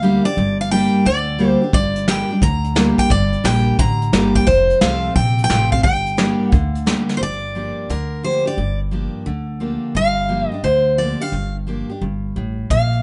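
A lightly reverberant, softly rounded recording catches a heartbroken, lonesome stretch of honky-tonk and classic country in G minor, swinging at 175 BPM in 4/4 and cut from a longer piece. Two bright, up-front picked steel-string acoustic guitars share the work, one carrying the melody while the other picks a full-bodied accompaniment over a woody, thumpy pizzicato upright bass moving between Gm and F. A distant, roomy brush kit joins at 1.7 seconds and plays a fill at 7.0 seconds as the music turns to Gm7, then drops away until it returns at 12.7 seconds.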